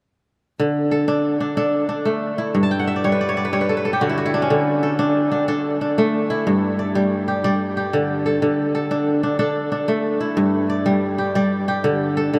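Joyful and warm, this short cut from a longer piece of West African traditional music rolls along in a 12/8 metre with a straight feel. A single acoustic kora carries everything, fingerpicked in flowing arpeggios that span from G2 up to A5 between 0.6 and 12.4 seconds. Its tone is crisp and ringing, and it sits up front in the mix. The harmony alternates steadily between D5 and G5 chords, and a brief kora fill from 2.6 to 4.5 seconds adds a flourish early on. A huge, wet reverb places the instrument in a vast, echoing space, letting each plucked note linger and bloom around it.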